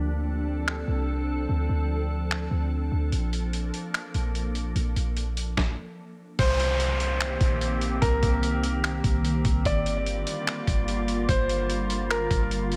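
A glassy, warbling FM pad holds sustained chords with ensemble chorus, its own reverb and sidechain pumping over a deep, boomy 808-style bass in this ethereal, spacious cloud-rap excerpt at 147 BPM in a half-time feel, while a gritty, pitched-down sampler-style drum kit with thumpy kick, snare, hi-hat and finger snaps enters at 0.7 s; the music briefly stops at 5.6 s before a soft, felt-muted upright piano melody with tape echo and an electronic downlifter arrive at 6.4 s.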